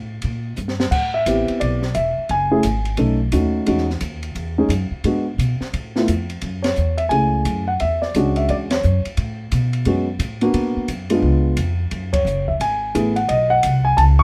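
A swinging jazz piano trio at 174 BPM in 4/4 opens with woody, pizzicato steel-string upright bass up front, while a small-room acoustic kit of dark-toned ride, crash, hi-hat, high-tuned snare and boomy kick plays a brief fill at 0.6 seconds. A mellow, vintage concert grand piano with deep bass and short sustain takes the melody from 0.9 seconds, also up front, over sophisticated harmony moving through chords such as Am9, Emaj13, G#m7b5 and C#7b9. The band hits accents from 6.6 seconds in the second section, under light reverb, before this cut from a longer piece ends on Badd9.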